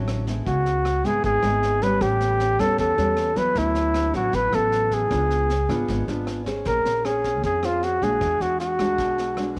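Wistful and smooth, this short bossa nova cut at 155 BPM features a breathy, mellow flugelhorn up front, playing a jazz-style solo melody with light vibrato and scooped notes from 0.5 seconds, over thumb-plucked classical nylon-string guitar with a dark tone, woody pizzicato upright bass, and a small-room brush kit with a high-tuned snare, punchy kick, rim clicks and a rolled-off top, all in light reverb as the chords move from C#m7 through A9, D69 and C#7b9 to Bbm9 and E9.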